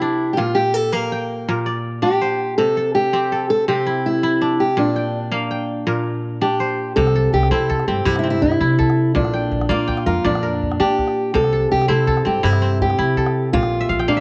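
Warm and joyful, this short cut from a longer piece is West African string and xylophone music in 12/8 with a straight feel. A fingerpicked steel-string acoustic guitar carries the melody up front from the start, its dark tone marked by audible finger squeak, while a crisp, ringing kora spins arpeggios alongside it. At 7.0 seconds, a woody, thumpy upright bass enters with pizzicato gut strings, joined by a deep, close calabash. The harmony rocks between Bb and C throughout. A moderate spring reverb adds a gentle halo to the sound, and the kora closes with a brief fill at 13.8 seconds.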